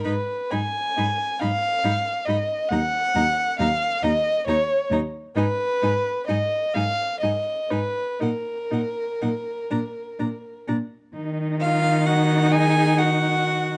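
In a rubato 6/8 lilt, this solemn, yearning slow movement for string quartet is cut from a longer piece, with all four players bowing sul tasto together from the opening to 13.8 seconds. The first violin carries the melody high with an airy bow and light vibrato, while the woody second violin sings a second line up front, the intimate viola supplies soft accompaniment and the pure, floating cello anchors the bass. The dark production sits in light reverb, and the harmony moves from G# minor through Eb minor and Ab minor to Bb before a brief new section arrives at 11.2 seconds.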